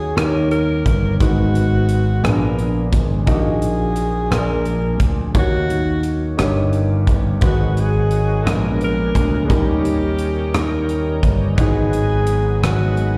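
A bright alto saxophone carries the melody of this solemn, soulful slow gospel excerpt, its soft attack and light vibrato sitting present over a slapback echo that it shares with the piano. The tempo is 58 BPM in a straight 6/8 in Eb minor, with the harmony moving through chords such as Abm7, Bb7b9 and Eb7. A clear concert grand piano with deep bass accompanies throughout, while an electric thumbed slap bass sounds punchy, direct and foam-muted up front, alongside a crisp acoustic fusion drum kit of hi-hat, punchy kick drum and rim click that enters at 0.2 s. A very quiet, mellow French horn section holds smooth sustained chords in a classical style underneath. At 7.4 s a full, shouting tonewheel organ joins in the background with key click, light overdrive, chorus vibrato and a slow rotary speaker. The performance sounds like a live gig heard through the venue's PA, carrying recital hall reverb, and it is cut from a longer piece.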